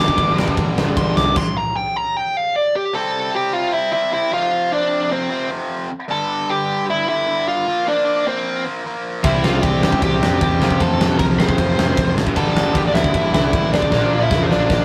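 A driving straight 4/4 pulse at 152 BPM sets this urgent, angry punk rock cut in G dorian, lifted from a longer piece and captured as a rough rehearsal-room recording with moderate studio reverb. A dark, smooth overdriven lead guitar sits up front throughout, opening with a solo over Gm before a stop at 1.4 seconds leaves it hanging on an unharmonized gap until 2.9 seconds. A tight, bright distorted guitar keeps its picked riff going the whole way, while a hollow-bodied overdriven semi-hollow guitar, a very quiet double-tracked fuzz guitar, a growly, punchy overdriven bass and a big rock drum kit with a fat snare and punchy kick all drop out after the opening and crash back in at 9.2 seconds. Through the middle stretch the lead melody moves across C, F5, G5 and Bb changes over only the lone riffing guitar, then the full band returns for C, F, Gm and Bb. A drum fill from 13.9 seconds closes the passage.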